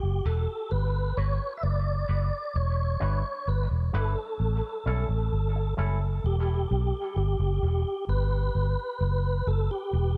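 A round, foam-muted electric bass sits up front in this hypnotic, spacious dub reggae excerpt, holding low in its range at a slow 65 BPM in straight 4/4 and E dorian. Above it, a mellow tonewheel organ carries the melody with audible key click, chorus vibrato, a fast rotary speaker and tape echo. A bright, twangy electric guitar pushed through an envelope filter adds compressed, picked accompaniment from 0.2 seconds, thinned by a high-pass filter and trailed by its own tape echo, before dropping out at 6.0 seconds. The harmony moves through Em7, Gmaj7 and A7, then shifts at 6.2 seconds to a new section built on Em and Gmaj7, where bass and organ carry on alone. The production is dark and dry, with little room sound, and the clip is cut from a longer piece.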